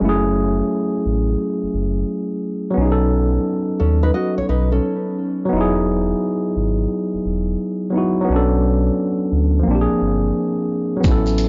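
A worn, slightly out-of-tune tine electric piano with cassette-tape color carries this melancholic, hazy lo-fi hip hop excerpt at 87 BPM in a swung 4/4, moving through F#m7, B7 and Emaj7 over a deep sine sub bass with tube saturation, while a dark, fingerpicked nylon-string guitar with analog delay and finger squeak appears from 3.8 to 5.5 seconds, and a gritty sampler-style drum kit with a thumpy kick arrives at 11.0 seconds alongside a barely audible egg shaker, all in a dry recording that keeps everything below 7.5 kHz.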